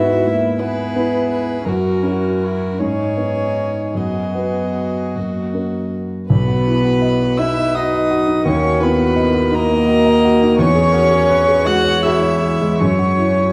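Classical chamber music for piano quintet, this slow, lyrical romantic movement in B major sways in a rubato 6/8 at around 49-58 BPM. It is cut from a longer piece. A single bowed violin carries the melody, high, pure and floating, played sul tasto with a soft attack and a smooth top. A second violin, darker in color, and a warm cello sing supporting lines beneath it, while a shadowy viola sits in the background as quiet accompaniment. Up front, the concert grand gives the sound an intimate quality, with deep bass, long natural sustain and audible action noise. The whole passage lasts 13.5 seconds and unfolds in a resonant recital hall with a dark, warm production, and at 6.3 seconds the harmony settles onto the home B chord as a new phrase begins.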